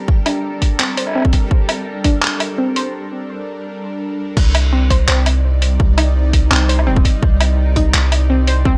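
A half-time drum and bass groove at 168 BPM in 4/4, with a slight 16th-note swing, sets a dark, cinematic tone in C dorian across this short cut from a longer piece. A hard-clipped, up-front electronic kick plays from 0.1 to 2.1 seconds, stays silent through a brief break from 2.9 seconds, and returns at 4.4 seconds for the drop. A compressed, pitched-down boom bap sampler-style kit of crash cymbal, handclaps, hi-hat and woodblock adds gritty texture. Underneath, a deep, sine-based 808-style bass sustains low, while a tense, string-like sawtooth drone holds chords through a phaser, vibrato, 12-bit sampler grit and sidechain pumping. A warbling, lo-fi sawtooth pluck carries arpeggios with chorus and analog delay, and a reversed, dreamy triangle swell drifts faintly through the opening seconds as filter sweeps on the drone and pluck build toward the move from Gm to Cm. The mix is dry and hardware-gritty, with the drums and bass sitting forward.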